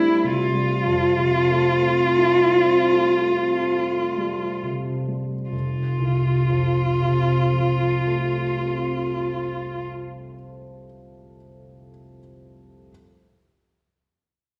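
Classical impressionist music for cello and baby grand piano, this brief excerpt from a longer piece has a pastoral, luminous mood and moves in a slow, rubato 3/4 at 32-50 BPM in F major. A single bowed cello carries the melody up front with a focused tone, a smooth top and vibrato, moving between E4 and F4 until it stops at 9.8 seconds. The baby grand piano, also up front, supports it with long-sustaining accompaniment that reaches from deep F1 up to F4 and rings on until 12.9 seconds. The opening passage slows over its first 5.5 seconds under an Fmaj9 harmony, then settles onto a plain F chord as a second section begins. A wet recital hall reverb with a 1.5-second decay places the listener further back in the room, wrapping the duo in a resonant space.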